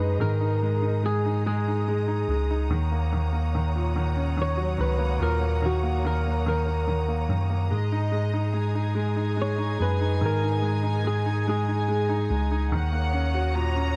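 A dry, close recording with a 1970s studio character and little reverb opens this short melancholic pop passage, cut from a longer piece and set in a straight 6/8. A clean, twangy electric guitar carries the aching melody with a subtle chorus and tape echo, its fingered, compressed tone sitting in the middle register until it drops out at 12.4 s. Beneath it, a clear concert grand piano plays polished, short-sustained accompaniment with deep bass, while a mellow tine electric piano sits up front and supplies the bass line. A lush symphonic string section holds smooth, vibrato-rich chords high above, and at 7.7 s a studio violin section joins with a reedy, gut-string second line in period style. The harmony moves slowly between G#sus2 and D#m7, keeping the mood aching and melancholic.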